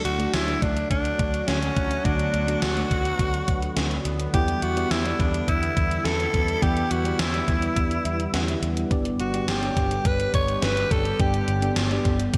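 A raspy, gritty alto saxophone carries the melody up front with vibrato and scooped notes, its line treated with delay over a nostalgic, romantic 1980s-style pop groove at 105 BPM in D major, moving from D to Em7 to G. A mellow FM electric piano with chorus supplies soft, warbling accompaniment and a short fill from 7.8 to 8.9 seconds, while an airy, detuned sawtooth pad sustains chords in the background. A punchy, foam-muted picked electric bass and a thumpy, sampler-style drum machine with gated reverb on the snare anchor this bright digital production in a lush hall reverb.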